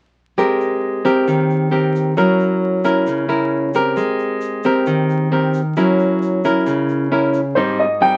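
Sunny and breezy, this short bossa nova cut in Ab major moves at 134 BPM in a straight 4/4, with an up-front fingerpicked nylon-string guitar shifting between Abmaj9 and Gb7 over a grainy, dry egg shaker tucked in the background, before a natural baby grand piano briefly takes the melody at 7.6 seconds over an Abmaj7, all heard in a moderate club ambience through the crackle of a very old 78 rpm record.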